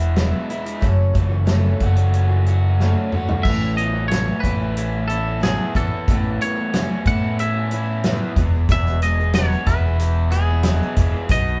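A straight 4/4 groove at 92 BPM drives this open-road, nostalgic folk rock and heartland rock excerpt, built on a natural country drum kit up front with a fat snare and punchy kick, a round, dark fingered electric bass, a crunchy double-tracked overdriven guitar riff, and a woody, shimmering picked twelve-string acoustic guitar in the background. During a drum fill, a clean, compressed, twangy electric guitar takes the melody at 3.4 s as the chords move from E and F#m7 to Aadd9. A grainy tube shaker joins in the background at 8.7 s, and the band, playing live in one room, sits in moderate studio reverb.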